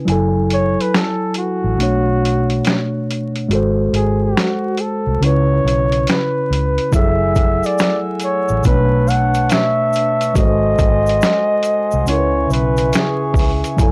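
A mellow flugelhorn with light vibrato and scooped notes carries a jazz-style solo over this hazy, reflective lo-fi hip hop piece, backed by a clean tine electric piano colored by cassette tape, a dark, round, foam-muted fingered bass and a gritty, overdriven sampler-style drum kit whose thumpy kick, snare, hi-hat and finger snaps lay down a swung beat, before a glassy, ethereal glass harmonica and a grainy tube shaker tucked in the background join at 6.9 s, in a dry, lightly reverberant recording dusted with vinyl crackle.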